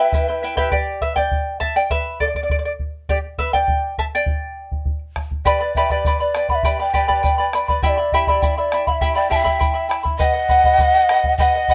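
Andean folk for a small Andean ensemble, wistful and melancholic, moving at 101 BPM in 2/4 over Em, G and B chords in this short cut from a longer piece. A shimmering, fingerpicked charango plays throughout, alone with the round bombo from 0.7 to 5.5 seconds, before the hollow, end-blown quena takes the melody at 5.5 seconds with vibrato and a crisp chiff, joined by the grainy tube shaker. Breathy cane pan pipes add a tongued second line from 9.2 seconds, all heard through close, detailed microphones in a moderate studio room.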